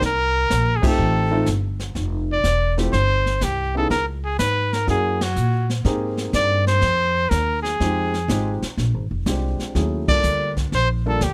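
A breathy, up-front trumpet carries the melody in a swinging jazz style, its tone punchy and present with a touch of vibrato as it solos across this short clip from a longer small-group swing and bop piece. Beneath it, a woody, dark upright bass is plucked pizzicato on steel strings and sits close in the mix. A brushed drum kit with dark cymbals, a medium-tuned snare and a punchy kick keeps the swing feel moving. A warm baby grand piano joins at 0.8 seconds with natural-sounding accompaniment, and the whole band hits shared accents at points such as 5.1 seconds. Recorded dry with close, detailed microphones, the mood is warm and swinging, passing through chords like Cm7, Gb9 and Abmaj7 before settling on Ebmaj9#11.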